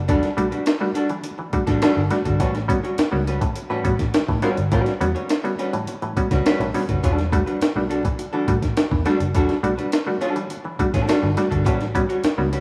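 A straight 4/4 funk groove at 104 BPM drives this short, funky cut in E dorian, with a gritty, pitched-up breakbeat sampler-style kit up front, its thumpy kick and high-tuned snare set against a foam-muted, round vintage fingered electric bass. A dark, hollow-bodied archtop guitar supplies clean picked accompaniment, while a nasal, stringy muted clav fires overdriven stabs through a combo amp as the harmony moves between Em11 and A13. A lush hall reverb and vinyl crackle give the rough home-demo mix its vintage air.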